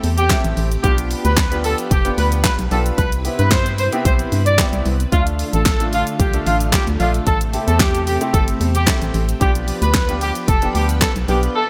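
Dance-pop with a bittersweet yet driving mood, this short excerpt moves in a straight 4/4 over a chord cycle of Am7, G7/B, Cmaj7 and Dm. An organ-like FM bass sits up front with a hollow, percussive tone and fast attack, pumping alongside a punchy pop drum kit of kick, fat snare, hi-hat, shaker and handclaps dressed in gated reverb. A clear horn section carries the melody from 0.2 seconds, tight and lightly vibratoed, with digital delay trailing its lines. Beneath it, a warm baby grand piano plays accompaniment through a lush chorus, while a shimmering string machine holds sustained violin chords in the background, both breathing with sidechain pumping. A crisp group handclap, close and dry, is barely audible, and the whole carries a bright 1980s-style digital sheen with light reverb.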